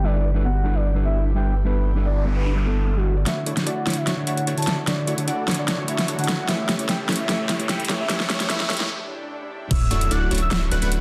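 A soft, octave-layered synth lead with chorus, tremolo and tape echo carries the melody over a clean, fingered electric guitar, an airy breathy pad and a round background pluck in this euphoric, lush half-time future bass excerpt at 149 BPM in D major, with a saturated sub bass dropping out at 3.2 s as a filtered supersaw stab riff and an overdriven big-room kit with a huge snare and metallic hats build through noise sweeps and risers, until a knocking electronic kick and the returning sub bass hit the drop at 9.7 s.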